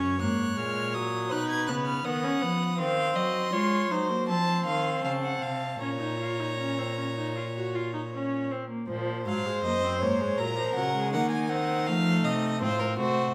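An up-front cello with a rich, reedy gut-string tone anchors this solemn, contemplative baroque-style fugue for string quartet, cut from a longer piece in a straight 4/4. Above it, the first violin carries the melody with an airy, nasal bow, a second violin plays a close second line, and a smooth-topped viola fills in the accompaniment, each a single period-style player. A moderate recital hall reverb lends the four voices a gentle bloom, and the music moves into a new section at 8.9 seconds.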